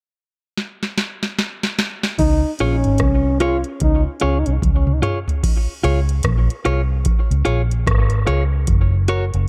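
This dub reggae excerpt opens with a booming analog drum machine entering at 0.6 s, its dry, deep kick, crisp snare, metallic hats, rim clicks, toms and crash cymbal rolling through a fill before the groove settles at 74 BPM in 4/4 with a swung sixteenth-note feel in Db major. At 2.2 s a vintage muted fingered electric bass arrives, round and foam-muted with an amped, dark tone, sitting up front in the low register. A mellow, close-miked trombone plays a brief solo-style second line from 2.2 to 4.5 s, its phrases trailed by tape echo. A clean electric guitar, picked and compressed, adds tape-echoed accompaniment in a higher register before another drum fill around 4.6 s leads into the next passage. The harmony rests on Db and moves to Gb near the end, and the light reverb and dark, warm production give the piece a spacious, hazy mood.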